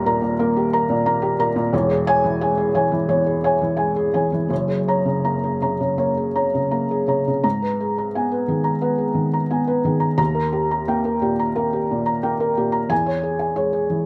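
Played rubato in a loose 4/4, this short excerpt of wistful, melancholic neoclassical minimalist piano drifts through chords such as C#m/E, F#add9 and G#madd9. A solo felt-muted upright piano carries the whole piece, its soft, mellow tone sitting up front with audible action noise that adds an intimate, close-up quality. The dry, detailed recording keeps the action noise in clear focus as the second section begins at 7.4 seconds on G#madd9 before circling back to D# and C#m/E.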